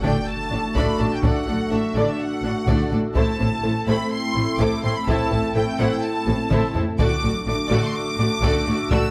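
A bright, lush symphonic violin section carries the melody over hard-stick taiko drums entering at 0.8 s in this vast, tense hybrid orchestral and electronic film cue at 125 BPM, joined by a dark, intimate chamber violin line, rich viola and clear cello and double bass sections, a hollow, airy pad with chorus, a very quiet squelchy blip pluck arpeggio, a background electronic impact at 0.0 s and a drum fill at 6.3 s, all moving from D/A to Am and back within a moderate scoring-stage reverb.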